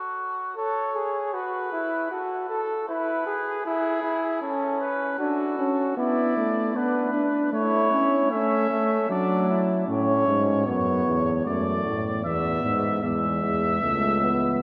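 Lively and joyful, this classical brass canzona excerpt in triple time opens with a mellow, distant trumpet carrying the melody with light vibrato, joined at 0.6 seconds by a smooth-topped flugelhorn on a second imitative line, then a dark trombone at 5.2 seconds and a bass trombone grounding the harmony from 9.9 seconds, the ensemble set in a long, wet cathedral reverb.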